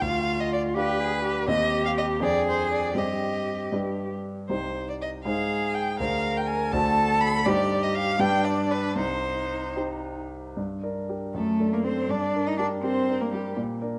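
A close, detailed recording in a wet recital hall gives this brief passage from a quick classical-period movement for piano trio its restless, urgent air, set in 6/8 around 74-84 BPM by the dotted quarter with a rubato feel, in C minor before turning to G minor at 10.6 s. An up-front violin carries the melody with a smooth, even bowed tone and vibrato, while a rich cello sings a second line with expressive portamento. The clear concert grand piano accompanies with deep bass and long sustain, holding on alone after the strings stop at 13.6 s until 14.0 s.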